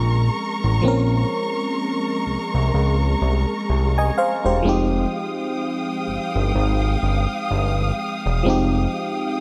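This short excerpt has a studio ambience, with a fat, thick analog bass sitting up front under a lush, dark string section and a glassy electric piano. It is a slow, sensual R&B groove in 4/4 with a gentle sixteenth-note swing and a longing mood. The FM electric piano carries the accompaniment from start to finish, its bell-like attacks decaying over a noise layer and coloured by chorus. Behind it, the symphonic strings hold bowed ensemble chords with expressive vibrato and a smooth top. The bass mixes sawtooth and square-wave tones, detuned and warm, with a moving notch colouring its sustained low notes until it stops at 8.9 seconds. The harmony moves from Bbm9 to Fm9 at 4.6 seconds, and the piano and strings play on to the end at 9.4 seconds.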